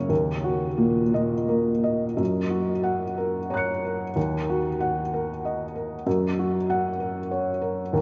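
A vast cathedral reverb, ringing on for about 5.4 seconds, surrounds this short cut from a longer neoclassical minimalist piano piece, and its top end is rolled off to a dark, hushed glow. Within that echoing space, a felt-muted upright piano plays solo, sitting up front with a soft, mellow and intimate tone, a slightly boxy body and audible action noise from the hammers and keys. The mood is peaceful and hopeful, moving in a slow, rubato 6/8 at roughly 56-64 BPM counted in dotted quarters, in F# major. The harmony sways between D#m and F#, with a second passage beginning at 2.2 s that returns to the same pair of chords. The piano spans a broad range from D#2 up to C#7, its close, cushioned sound set against the distant wash of the room until the excerpt ends at 8.0 s.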